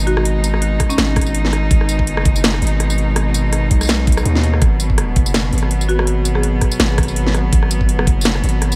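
A deep, mellow 808-style sine bass sits up front through this dark, tense half-time drum and bass excerpt, beneath an earthy bowed cello section holding sustained chords with light vibrato and sidechain pumping, a tape-warm electronic kit of cracking snare, metallic hats, rim click and tambourine, a knocking electronic kick from 0.8 seconds, and a dry, buzzing hard-mallet marimba with 12-bit sampler grit and digital delay that surfaces in the background at 0.1 and 5.9 seconds.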